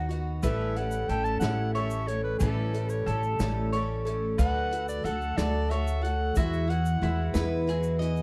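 A clear soprano saxophone with classical-style vibrato opens this nostalgic acoustic folk excerpt in a slow 6/8 at 61 BPM, carrying a solo over a boxy, shimmering twelve-string guitar, a woody mandolin playing arpeggios, a pizzicato upright bass, a natural country drum kit with a tight kick, and a grainy tube shaker in the background, moving through A7, D and Eadd9 before a picked plugged-in steel-string acoustic guitar with slapback echo enters up front with the melody at 7.3 seconds, set in light reverb within a dark, warm production.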